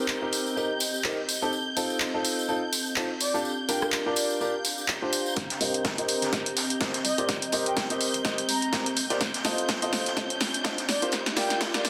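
A dense, heavily limited master with moderate plate reverb carries this bittersweet, soulful piano house piece at 125 BPM in C dorian, where a clear, boxy baby grand piano riff pumps through delay over shimmering string-machine violins and an ethereal, phaser-laced pad, while a punchy analog drum machine and tambourine drive the groove alongside a very quiet downlifter and riser; a breathy flute-like synth lead enters at 3.2 s, and from 5.4 s a dark, organ-like FM bass, a background electronic kick and a rolled-off vintage drum kit join as a filter sweep on the piano, a build-up and a drum fill move over Cm7, F7 and Gm7.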